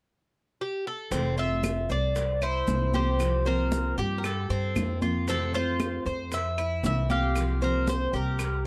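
A relaxed, danceable straight 4/4 groove at 115 BPM carries this short cut of Cuban son and guajira in F major: an up-front, mellow tres with metallic double strings takes the melody from 0.6 seconds, then at 1.1 seconds a second, warm tres adds arpeggios, a full-bodied dreadnought steel-string guitar with audible finger squeak accompanies, and a dark, thumpy gut-string upright bass sits prominently while bright, damped congas, tight, distant bongos, grainy, saturated maracas and woody claves (from 1.6 seconds) stay in the background, all over Fmaj7 and C7sus4 chords captured with close, detailed microphones and light reverb.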